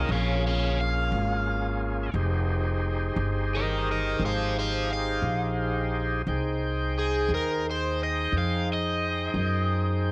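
A slow 12/8 blues sways under this soulful, brooding excerpt, the woody, thumpy pizzicato of an upright bass anchoring the low end as the harmony moves from Bbm7 to Fm7 at 2.1 seconds. A gritty, overdriven tonewheel organ holds thick, full chords with audible key click through a slow rotary speaker. Over them a bright, crunchy electric guitar takes a picked solo colored by phaser, all three parts sitting up front in a light studio reverb.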